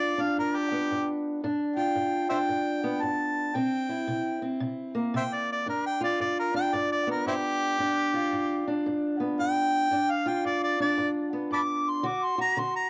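A loose swing on the eighth notes drives this acoustic country blues at 113 BPM in 4/4, giving the excerpt a swaggering, soulful gait in G mixolydian. A mellow harmonica carries the melody and solos throughout, sitting up front with light vibrato, scooped notes and tongue slaps that lend its phrasing a jazzy flair. Beneath it, a dark parlour steel-string guitar is fingerpicked in the low and middle register, also placed close and carrying the grain of cassette tape. The harmony moves from G7 to C7 at 3.5 seconds, back to G7, and reaches D7 at 12.0 seconds before the cut. A moderate spring reverb and small-room ambience frame the duo, giving it the intimate feel of a home recording on cassette.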